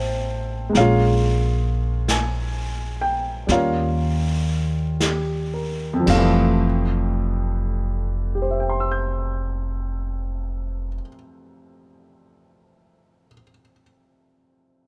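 Tender and romantic, this slow jazz ballad excerpt in F major swings gently at 35-48 BPM, slowing down through its first 6.6 seconds as an intimate, up-front grand piano with audible action noise and a woody, gut-strung pizzicato upright bass move from Dm9 to Fmaj9, while a distant brush kit with dark cymbals and a boomy kick plays only until 6.3 seconds in a dry mix.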